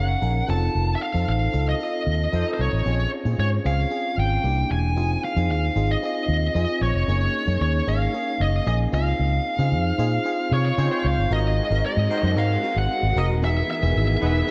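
Nocturnal and urban, this dreamy, reverb-soaked pop fragment sets a distorted, high-gain lead guitar melody up front over glassy, bell-like FM electric piano with subtle chorus and a round, punchy muted electric bass, while a mellow, vibrato-laden horn section drifts in the background briefly at 2.3 seconds and again from 10.8 seconds, joined at 11.3 seconds by lush, dark bowed strings holding sustained chords.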